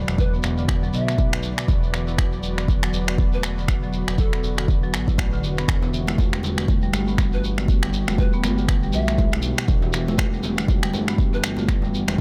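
A deep, overdriven electronic kick sits up front at 120 BPM in 4/4 with a 58% swing on the 16ths, joined by tape-warm electronic finger snaps, a grainy shekere and, from 5.8 seconds, ringing high-tuned congas in the background, driving this earthy afro house groove in E minor. A smooth sawtooth synth bass and a detuned analog pad with chorus both pump to the sidechain, as does a woody rosewood marimba playing arpeggios with dub echo. Over the shift from Bm/E to Em at 5.7 seconds, an airy, hollow bamboo pan flute with vibrato and a crisp, chiffy attack carries the melody from a distance, trailed by its own dub echo, all in a small room ambience.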